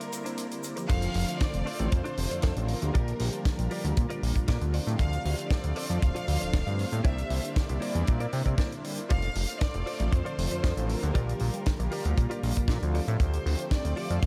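A groovy, feel-good nu-disco excerpt at 117 BPM in F major opens with a rich, expressive bowed violin section carrying the melody over mellow, brassy synth brass with chorus and delay, a lush, detuned unison pad with chorus, phaser and sidechain pumping, a tight funk drum kit with a high-tuned snare, and a brief egg shaker, soon joined by a clean, direct-recorded electric guitar riff with analog chorus and delay. At 0.9 seconds the drop lands as a fat, wave-folded analog bass with a filter sweep and an up-front, natural kick drum take over the low end, the two sitting loudest in the mix. The guitar steps in with a short fill at 4.2 seconds while the chords cycle through C9, F6, Bb6 and Dm7 under light reverb.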